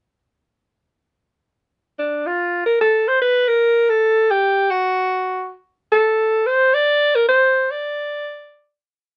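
A breathy alto saxophone plays alone in this playful, relaxed jazz piece in free time, entering at 2.0 s with a vintage subtone, scooped notes and motif-based call phrases between D4 and D5. Up front and closely recorded in fine detail with light reverb, the saxophone is tuned to A4 = 439 Hz, and a fade-out begins at 7.3 s.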